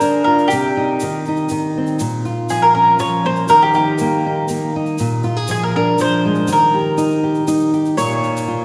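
A lilting three-beat pulse carries this wistful, intimate acoustic folk excerpt, set in a lingering church reverb that keeps the sound soft and rounded at the top. Up front, a picked mandolin sings the melody with a round, double-string tone, while a fingerpicked steel-string guitar supplies a dark, woody accompaniment whose old strings lend it a mellow, worn character. A grainy, bright egg shaker sits close and dry beneath them, marking the time from the start. The harmony moves through Cm, Bbm, Eb and Bb7, giving the passage a gently bittersweet colour. At 8.0 seconds a bowed cello enters on a low second line, earthy and smooth with light vibrato, just as the phrase turns back to Bbm.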